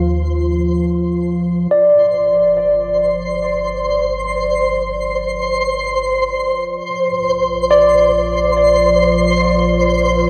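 Free-time ambient fragment, spacious and reflective, in which a round sine sub bass and a dark, detuned analog drone with chorus sound from the start and fade in from 1.7 s beneath a sparkling, up-front granular texture with an octave-up shimmer, while a gritty, overdriven tine electric piano enters at 1.7 s with arpeggios on D5 through lush chorus and tape echo, the harmony moving from Ebsus2 to G5 and then to Bbadd9 at 6.9 s, and the recording sits in a huge reverb with the warbling pitch drift of worn cassette tape.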